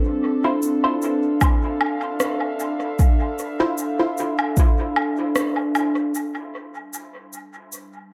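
An echo-heavy, lightly reverberant mix opens this short ambient dub fragment, cut from a longer piece, with a deep, spacious mood in D dorian at 76 BPM and a gently swung 4/4 feel. A warbling, lo-fi pad of detuned sawtooth and triangle tones sits up front throughout, its slow attack and long release sustaining dark, nostalgic chords through chorus and built-in reverb, moving from Dm9 to G7(no3) at 6.2 seconds. A soft, woody kalimba plucks a brief, barely audible arpeggio at the very start, while a muted, mellow dub chord stab with a filter sweep, phaser and dub echo punctuates the opening seconds. Electronic cabasa, woodblock and rim click, re-recorded in a large room and trailed by dub echo, carry the percussion from 0.6 seconds nearly to the end. An overdriven, layered electronic kick, deep and placed up front with a small-room character, pushes through the middle of the passage.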